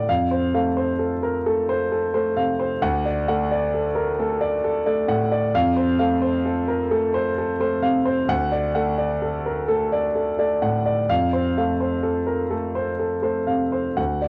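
Neoclassical minimalist piano in F major, hopeful and tender, moving at a slow 44 BPM in 6/8 with a rubato feel. A single concert grand carries the whole 14.3-second excerpt, placed up front, with a clear, smooth, vintage tone and a deep bass that reaches down to D2 and climbs as high as F#5. The harmony rocks gently between F and D chords, shifting roughly every few seconds, which gives the passage a patient, circling quality. Light reverb and a touch of studio ambience surround the instrument, captured as a home recording on cassette. Cut from a longer work, the passage feels like a brief, intimate glimpse of a larger piece.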